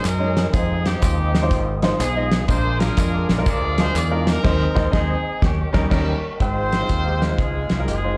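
Reverent and uplifting, this uptempo gospel excerpt in Ab major swings at 123 BPM as a clear, softly attacked horn section carries the melody over a grand piano with audible action noise, a mellow, flute-like tonewheel organ turning on a slow rotary speaker in the background, a bright, punchy fingered electric bass and a fat-snared soul drum kit with dark cymbals, while handclaps, tambourine and egg shaker lift the groove until a band accent arrives at 4.4 s, and a breathy, whispered tenor saxophone with scooped notes enters at 6.4 s, the whole band heard through a live club's PA.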